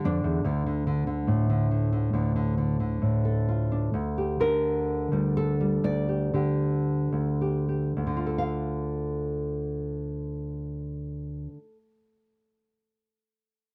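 A dark, fingerpicked nylon-string guitar sits up front with audible finger squeak, playing a haunting, melancholic solo folk piece in D minor with a classical touch, tuned to A4 = 438 Hz and ranging from D2 to F5. The rubato pulse in 4/4 drifts between 52 and 73 BPM and slows from 0.5 to 8.0 seconds, moving from a D5 chord through Gm at 3.9 seconds to Dm at 8.0 seconds. The close, dry 1970s-style studio sound carries light reverb, and the passage is cut from a longer piece.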